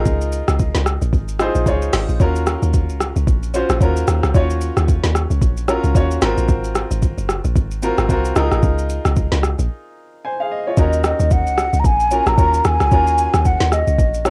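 This late-night amapiano fragment opens with a clear, boxy grand piano playing short-sustained chords over a deep log drum bass that is round, percussive and dark, with a noise layer and a fast attack that decays. Almost at once a smooth R&B drum kit joins up front, with a soft kick, woody snare, metallic hats, rim click and shaker giving a produced, electronic groove with a relaxed sixteenth-note swing. The piano is coloured by cassette tape and plate reverb, while the harmony moves through Db69, Ebm9 and Ab13 for a deep mood. A brief break arrives at 9.7 seconds, and at 10.8 seconds a mellow, hollow concert flute takes the melody up front, its airy tongued notes carrying vibrato, tape echo and the same tape and plate colouring. The home cassette recording lends the whole piece a light reverb.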